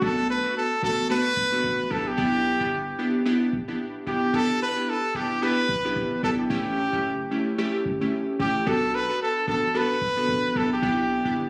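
A swung 16th-note groove at 111 BPM in 4/4 drives this sunny, breezy afrobeats passage cut from a longer piece, moving through Bm7, G6 and A7 chords and tuned slightly high to A4 = 441 Hz. A warm pop-style trumpet carries the solo melody up front with light vibrato and tape echo, over glassy digital keys that add chorus and a filter sweep. A deep, boomy, mellow 808-style bass sits low and clean beneath them. The sound has the light reverb and compression of a phone recording in the room, plus studio reverb.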